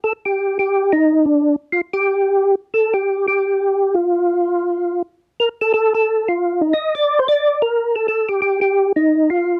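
Soulful and late-night, this brief jazz excerpt in G minor swings at 179 BPM in 4/4 as a solo percussive tonewheel organ, mellow and round with a third-harmonic click, chorus vibrato and a slow rotary speaker, sits up front across a range from D4 to Eb5 in a dry, close 1970s-style studio sound.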